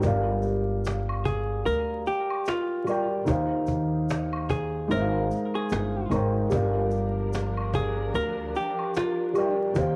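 A home cassette recording with vinyl crackle and a moderate spring reverb carries this nostalgic, melancholic lo-fi hip hop passage, cut from a longer piece, where a soft, felt-muted upright piano with audible action noise and a thumpy pizzicato upright bass sit up front over a woody cajon played with soft hands and a distant tube shaker and woodblock. At 1.3 seconds a dark, clean hollow-body jazz guitar enters with a compressed, picked melody through analog delay, as the chords move from Gm7 through Eb6 and Ab6 back to Gm7. At 6.5 seconds a lush, bowed studio string section with vibrato and portamento joins on sustained chords.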